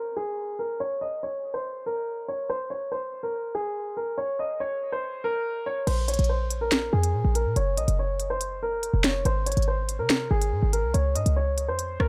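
A half-time drill groove in 4/4 drives this dark, ominous hip hop excerpt, built on a sharp snare, crisp hi-hats, finger snaps, rim clicks and crash cymbal from an electronic, up-front drum kit. For the first 5.9 seconds a clear concert grand piano carries the melody alone, open and deep in tone, its line held in a narrow upper register, run through a low-pass filter and digital delay while a filter sweep moves over the opening. At 5.9 seconds the drums arrive alongside a short 808-style bass that is punchy and tight, a sine tone with a noise layer, fast attack and decaying body, sitting up front in the mix. From there the harmony moves through Bb5, Gb, Ab and Db as a further filter sweep works on the piano. The production is dry and dark, with a low-pass filter shading the overall sound.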